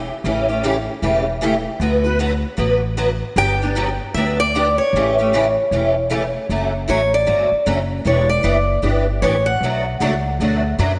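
Playful and charming, this short excerpt of acoustic string swing in the jazz manouche style moves at 154 BPM in 4/4 with a lilting swing on the eighth notes, set in D major. A woody, growly upright bass sits up front, played pizzicato with a thumpy attack, while a bright, parlour-sized steel-string guitar supplies picked accompaniment colored by an ensemble chorus. At 3.4 seconds an old ladder-braced guitar enters with a boxy, picked melody in its upper register, its aged strings trailed by analog delay. From 6.5 seconds the steel-string guitar takes a solo over a second section built on Dmaj7, Em7 and Bm7, following the opening turn through A7, D6 and Gmaj7. The whole mix is soaked in a lush two-second hall reverb with its top end rolled off, giving the sound a dreamy, softened haze.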